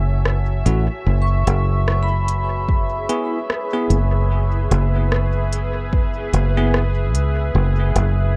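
Ambient dub with a deep, spacious mood, this short excerpt from a longer piece moves with a swung 4/4 feel over a dark digital ambience, shifting from F#m7 to E/F# at 1.1 seconds. A deep, moody pad of detuned sawtooth and sine layers with a sub octave, wave-folding and ring modulation holds sustained chords throughout, its slow attack and long release softened by chorus and its own reverb. Up front, a fingered electric bass sounds bright, punchy and foam-muted, while an organic electronic drum kit brings crisp hi-hat and rim click with a tape-warm character from a small room, sent into dub echo. A bell-like tine electric piano drops clean stabs through phaser and dub echo, and a vibraphone played with hard mallets ripples metallic, airy arpeggios in the background, its fast motor vibrato ringing into the echoes from 1.2 seconds on. An overdriven, layered electronic kick drum adds a deep, forward thump between 2.7 and 6.1 seconds.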